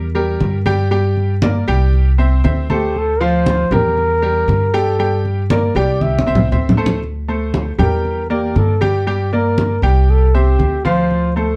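Danceable and warm, this Cuban son and guajira fragment moves at 118 BPM in a straight 4/4, with a bright baby grand piano rolling arpeggios over a woody, thumpy upright bass and damped, low-tuned congas. A trumpet with a bucket mute enters at 2.7 s with a veiled, breathy, whispered tone and scooped notes, then takes a jazz-style solo from 7.0 s after a fill. The piano's brilliant, worn sound, with audible action noise and short sustain, sits up front with the bass and trumpet in a dark production with light reverb.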